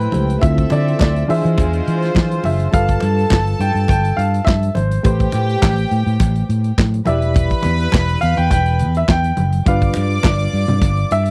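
Sultry and danceable, this short disco cut moves at 104 BPM in a straight 4/4. A natural-sounding baby grand piano carries the melody with a short sustain and a slapback echo. Around it, a studio string section floats with a soft, bowed, sul tasto tone, and a barky, reedy electric piano supplies accompaniment, lightly overdriven and shimmering with fast tremolo. The fingered electric bass sits up front, amped and punchy, alongside a dry, mid-forward soul drum kit with a tight kick, medium-tuned snare, hi-hat and handclaps. Very quiet congas with a bright, thin-skinned, damped sound add vintage colour from 0.1 to 11.0 seconds. The chords move through Dm9 and E7b9b13 before the second section begins at 2.7 seconds on G9, passing Am9 and Em7 to G7, all captured in a close, dry 1970s-style studio sound with little reverb.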